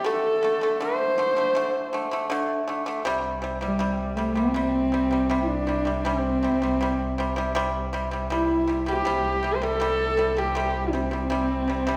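A lingering hall reverb surrounds this Mongolian folk passage, with a faint mains hum beneath it, as if it were captured in a church or concert hall. It is cut from a longer piece and carries a vast, proud mood in a straight 4/4 feel. Up front, a single horsehead fiddle carries the melody with a dark, husky, woody bowed tone, shaped by vibrato and portamento. Close beside it, a pipa played with fingerpicks spins dry, percussive arpeggios in a lower register. At 3.1 s, as the harmony shifts from D5 to C5, a single double bass enters with a smooth, even bowed drone on a low C, its vibrato adding depth beneath the two upper parts through to 12.0 s.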